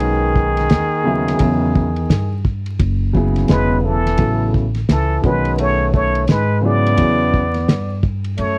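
A swung 86 BPM groove in 4/4 opens this mellow, cool jazz-hop excerpt, driven by a cloth-damped, thuddy drum kit with a fat snare, dark cymbals and gritty saturation, while a woody, growly pizzicato upright bass anchors chords like B69, E69 and Aadd9. Up front, a breathy plunger-muted trumpet carries the melody with wah-wah inflections and vibrato, joined by a brilliant, forceful trombone playing a second line with scooped notes, as a dark, intimate concert grand supplies accompaniment, its action noise audible, until 7.4 seconds. The dry, close 1970s-style studio sound carries vinyl crackle, and the kick drops out at 8.4 seconds as the passage closes on E13.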